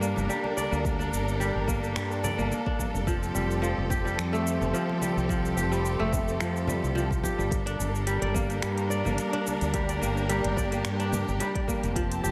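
Organic downtempo at 108 BPM in G minor with a light 16th-note swing, this meditative excerpt moves from Gm to Fadd9 and back as a ringing, fingerpicked kora plays arpeggios through analog delay and shimmer reverb over clear, vibrato-rich studio strings holding sidechain-pumped chords, a dark, round fretless electric bass, an overdriven electronic kit of finger snaps, crisp hats and shaker, very quiet hard-handed congas from 0.2 seconds, and a deep, tape-warm electronic kick entering at 0.8 seconds, all bathed in a dreamy plate-reverb mix.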